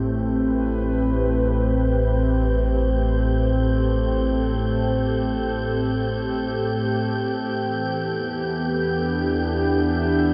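A warbly, nostalgic tape-like pad holds sustained, detuned chords up front over a deep, ominous rumbling drone, while a breathy wind-like tuned noise fades in high above, forming a reflective, spacious ambient fragment in free time and A minor that drifts from Am7 to Em7 at 7.5 seconds inside an enormous, wet reverb with a dark, warm production.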